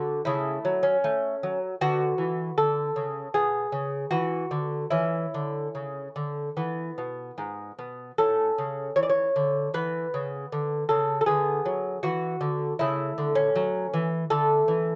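Worn, warbling cassette tape with drifting pitch and a light reverb colors this fragment, cut from a longer piece, of a flowing, radiant baroque-style dance in A major, moving at a rubato pulse around 73-81 BPM in 4/4. A solo lute sits up front for the full 15 seconds, its fingerpicked gut double strings, some doubled at the octave, giving a mellow, delicate tone across a range from G#2 to D5. The harmony passes through A/C#, Bm, C#m and E before settling back on A, then drifts through E5, E7/D and A/C# toward a closing D5 at 14.3 seconds.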